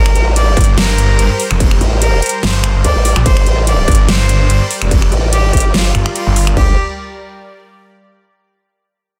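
The recording is dense and heavily limited, with a dry, modern master that keeps every layer pressed close. This is an aggressive, heavy wobble dubstep drop in half-time with a light swing, cut from a longer piece and sitting on a single G minor chord. A formant-sweep wobble bass runs the full length, its pulse and sine tones saturated and thickened with chorus and overdrive. From 0.6 seconds a snarling, distorted saw bass joins it, growling and detuned with a moving notch. Two layered electronic drum kits drive the groove. One carries finger snaps, metallic hi-hats, a huge snare and crash under studio reverb, and the other, entering at 0.6 seconds, adds a distorted kick, toms and crash. Above the weight, a clear, focused cello sings the melody with vibrato and tape echo, while a lush supersaw pad holds slow-blooming chords in the background, pumping against the sidechain until it ends at 6.8 seconds.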